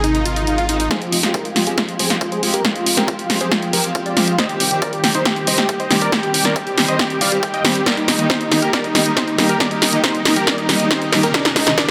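A straight 4/4 pulse at 138 BPM drives this soaring, euphoric uplifting trance build-up in F dorian, cut from a longer piece: an up-front, overdriven analog drum machine plays hi-hat and a punchy snare across the whole passage, with a drum fill running from 0.9 s, while a layered electronic kick sits in the background from 0.9 s. Over chords moving through Ab, Fmadd9, Cm and Eb, a huge, thick, detuned supersaw lead carries the melody with vibrato, sidechain pumping, tape echo and a filter sweep, backed by a lush, bowed studio string section that also pumps, and a round, dark FM bass lying very quietly underneath. A faint electronic swell opens at 0.2 s and a riser returns at 11.0 s, all bathed in a huge ambient reverb.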